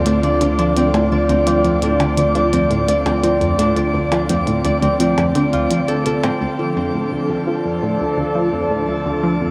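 This cosmic, mysterious stretch of ambient, sequencer-driven space music opens at once on a sweeping, resonant pad holding a Dm7 chord, joined by the mellow, ringing tones of a fingerpicked Celtic harp playing delayed arpeggios up front and a round, deep analog bass anchored on D. Within a fraction of a second a tight, driving sequenced synth riff enters low in the register, its wave-folded, plucky edge treated with chorus, phaser and delay, alongside clicky electronic hi-hats and percussion blips that carry a small-room character. Moving at 85 BPM in a straight 4/4 in D minor, tuned slightly flat to A4 = 436 Hz, the piece sits inside a drenched shimmer reverb with a long 8.9-second tail. The percussion drops out at 6.4 s as a second section begins, and at 7.0 s a bubbling, detuned texture of random filter steps rises softly in the background. The harp stops at 9.2 s, leaving pad, bass, riff and texture to carry this fragment cut from a longer piece.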